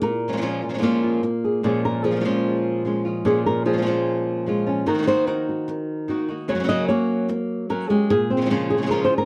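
Two acoustic flamenco guitars open together in a mournful, dramatic Bb minor at 148 BPM: an up-front, dark, thumb-plucked lead carries the melody with audible finger squeak, while a warm, fingerpicked second guitar sits lower in the mix, punctuating with stabs. From 1.6 seconds a nylon-string guitar solo unfolds as the opening Bbm7 moves through Ebm and Gb and back to Bbm7. The dry, close sound of a 1970s-style studio gives this brief cut from a longer piece an intimate, in-the-room presence.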